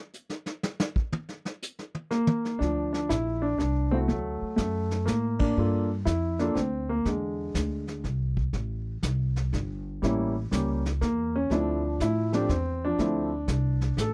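A cool, swinging jazz piano trio excerpt in D minor, moving at 121 BPM in a lilting 3/4 with a strong swing on the eighth notes. A vintage brush drum kit opens alone with a short drum solo, its brushed snare, dark cymbals, hi-hat, punchy kick and toms sounding natural and rolled-off in a studio room. The concert grand piano enters at 2.1 seconds to carry the melody between D3 and A4, its tone mellow with a deep low end and short sustain. The upright bass joins at 2.6 seconds, plucked on gut strings with a woody, thumpy character, as the harmony moves from Dm7 through Gm7, Eaug7 and Am7 to A7b9 before returning to Dm7. The whole band hits an accent at 5.3 seconds. The sound is dry and close, in the manner of a 1970s studio recording, with all three instruments up front.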